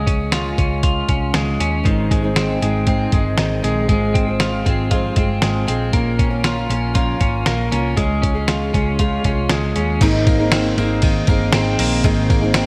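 Lush hall reverb gives this bright, nostalgic slice of jangly indie pop a big arena sound. Up front, a bright, clean twelve-string electric guitar picks compressed arpeggios through spring reverb, over a dark, round, foam-muted vintage electric bass and an overdriven, pitched-down lo-fi sampler-style drum kit with a muffled, thumpy kick, fat snare, hi-hat, ride and crash. At 1.8 s a warm fingerpicked steel-string acoustic guitar joins with slapback echo and audible finger squeak, and the chords move from Db through Bbm before landing on Abadd9 at 10.0 s.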